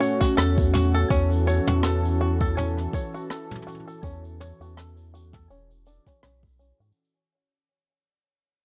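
A bright, twangy five-string banjo played with fingerpicks colors this playful, hopeful folktronica fragment, its arpeggios passing through a low-pass filter and tape echo while a filter sweep runs across the passage. Alongside it, a smooth, warbling vintage analog pad sits up front with sustained chords, moving from A6 to a rootless Dmaj7/E, with its detuned sawtooth and triangle tones softened by subtle chorus. A soft electronic kick enters at 0.2 seconds, joined by a deep, round sine sub bass that sits up front from 0.4 seconds. An airy jazz brush kit adds rim clicks, shaker and toms at a swung 82 BPM in 4/4, playing until 7.2 seconds. The dry, close room evokes a 1970s studio, and the fragment fades out from start to finish.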